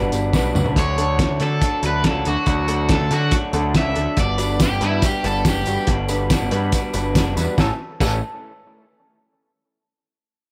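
This carefree, jangly indie rock excerpt opens with two dark, slightly broken-up electric guitars through a small old amp playing riffs: one fingered and bathed in spring reverb, the other picked further back with analog chorus and delay. A growling, overdriven picked bass sits up front alongside a cloth-damped, thuddy drum kit with a fat snare, tight kick and muffled dark cymbals, and the drums play a fill just before a bright, overdriven semi-hollow guitar takes a solo at 0.8 seconds over chords moving from Gmaj7 to D. A jingly tambourine sits in the background at the start and returns at 4.2 seconds, all within a gritty, lo-fi small-room sound.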